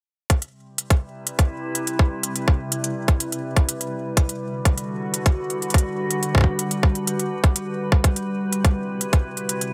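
Wistful and intricate, this IDM excerpt at 124 BPM in C lydian opens with a tight, overdriven electronic kick and crisp, overdriven hi-hats up front from 0.3 seconds, joined at 1.1 seconds by a glassy, ethereal FM pad with slow attack, ensemble chorus and sidechain pumping sustaining chords from Cmaj7 to Gmaj7 and back, all set in a lush hall reverb with bright 1980s-style digital production.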